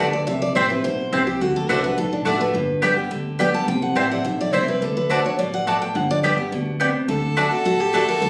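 Lively and driving, this short bluegrass cut from a longer piece runs at 211 BPM in 4/4, cycling through C, D and G with an up-front, full-bodied acoustic guitar carrying the melody, its warm tone marked by finger squeak, over a second, brighter picked guitar's accompaniment. A mandolin adds bright, woody double-string stabs, and a pizzicato upright bass with gut strings gives a dark, thumpy, woody bottom. At 7.1 seconds a clear, smooth fiddle with light vibrato joins as a second line, all heard through a phone recording of the room with club-like reverb.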